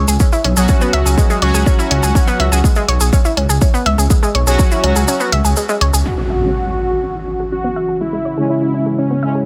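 A straight 4/4 pulse drives this cinematic, driving melodic techno excerpt, anchored by a punchy, layered electronic kick with small room ambience, dry electronic hi-hats that pump with sidechain, and a grainy, bright tube shaker that carries a live-room feel. Underneath, a deep, rumbling detuned saw bass sits up front and pumps in time, while round, nasal analog pluck arpeggios ripple through chorus, digital delay and a vintage 12-bit sampler grit. Bold, brassy analog synth stabs with chorus and delay punctuate the groove throughout. The kick drops out at 5.1 s, and at 6.1 s an up-front electronic impact lands as a smooth, evolving soft supersaw melody enters through a low-pass filter and delay, while filter sweeps play across the arpeggios and the brass stabs. A mellow, warbling analog drone joins at 6.9 s, and a very quiet, moody ambient pad with a slow attack adds dark sustained chords near the close, all held together by a light reverb.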